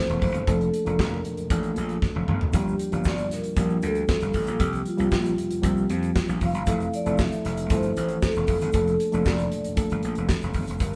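A straight disco groove drives this glamorous excerpt, with a polished, airy acoustic drum kit up front (a tight kick and medium-tuned snare) and a growly, overdriven slap bass punching beneath it. A mellow, ringing vibraphone with soft mallets and a medium motor vibrato carries the melody over a reedy, worn and slightly out-of-tune electric piano, moving through chords from Bbmaj7/F to Gm7, C7sus4 and Fmaj7. Distant, thin-skinned congas sit very quietly in the background, a drum fill at 2.0 seconds brings in a grainy egg shaker at 2.5 seconds, and the whole band plays live in a moderate stone room.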